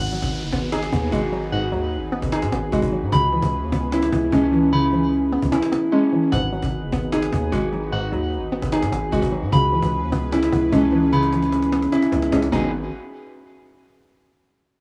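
An electronic downlifter sinks away at the opening as a dark, eerie trap beat in a half-time feel takes hold, cut from a longer piece. A slightly broken-up electric guitar sits up front with fingered arpeggios treated with spring reverb and digital delay. Underneath, a hollow, bouncy square-wave pluck with chorus and a moving notch filter plays the accompaniment, while a smooth, detuned sawtooth pad with chorus holds sustained chords in the background, alternating between G#m7 and C#m7. A heavy, aggressive 808-style bass with distortion anchors the low end, and a snappy cajon struck with hard hands carries the drums with a gritty 12-bit sampler character. The kick drops out between 5.5 and 6.3 seconds, a drum fill arrives at 11.1 seconds, and the harmony stops at 12.7 seconds as the bass rings on briefly, all in a rough home-demo mix with a small-room ambience and little reverb on the room itself.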